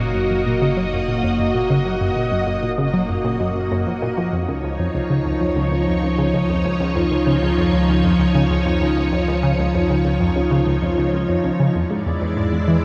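Luminous and cosmic, this ambient space-music piece moves at 97 BPM in a straight 4/4, cut from a longer work. A lush, vintage string machine sits up front with full-ensemble sustained chords, its sawtooth tone thickened by a sub octave, slow attack, phaser and ensemble chorus. Beneath it, a tight sequenced synth drives a riff with detuned sawtooth and pulse waves, a filter pluck and a mellow edge, colored by chorus and tape echo. A round analog bass anchors the low end, dark and evolving, blending sawtooth and sine with ring modulation and tube saturation. The harmony moves from F# to C#add9 at 4.3 seconds and on to E7 at 11.8 seconds. A huge, wet reverb with a 7.8-second tail and the warbly pitch drift of worn cassette tape give the recording a hazy, drifting quality.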